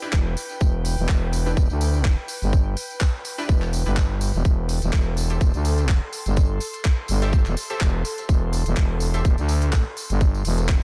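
Bouncy and gritty, this bass house excerpt moves at 125 BPM in 4/4 with a light swing on the sixteenths, cut from a longer piece and sitting on Em7 before shifting to Am7/E at 4.4 seconds. A tight, layered electronic kick drum sits up front beside a thick, growling FM bass that pumps with sidechain and carries a filter sweep across the whole stretch. A garage drum kit adds handclaps and crisp hats with a tape-warm character, captured in a large room, while a jingly, close and dry tambourine ticks away in the background. Bold, punchy orchestra-hit-like synth stabs built from detuned sawtooth unison, a noise layer and ring modulation flash brightly but very quietly until 9.3 seconds, trailing their own built-in reverb. Behind them, an airy, breathy pad with a slow attack and long release drifts high in the background, thickened by chorus and pumping with the sidechain. The overall mix is dry, with little reverb.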